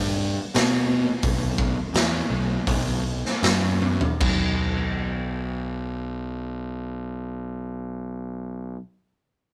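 A fuzzy, overdriven picked electric bass sits up front through this heavy, sludgy stoner and doom metal excerpt in 4/4 at 74-90 BPM, tuned to A4 = 445 Hz, joined from 0.5 to 4.4 seconds by a gritty, punchy garage drum kit with crash, hi-hat, kick, snare and toms in a bright, pumping stone room, as the opening section slows down into a drum fill at 3.8 seconds before the bass carries on alone through the rough, tube-saturated rehearsal-room sound with light reverb.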